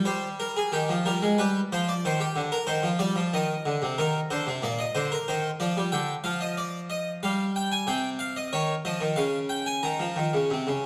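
In a straight 3/4 at 92 BPM, this baroque-style two-part invention in C minor moves with an elegant, lively step. A solo Flemish-style harpsichord with three sets of strings carries the whole fragment, its plucked tone full and brilliant and set up front, ranging from Bb2 to Bb5 and tuned to A4 = 439 Hz. The opening phrase circles around C minor and its G7 dominant. At 4.0 s the harmony turns toward E-flat, passing through richer colours such as Ebmaj13 and Dmadd11 before settling back on C minor and a brief Db. A wet recital-hall reverb with a 1.3 s decay surrounds the instrument, and the passage ends at 10.9 s as a cut from a longer piece.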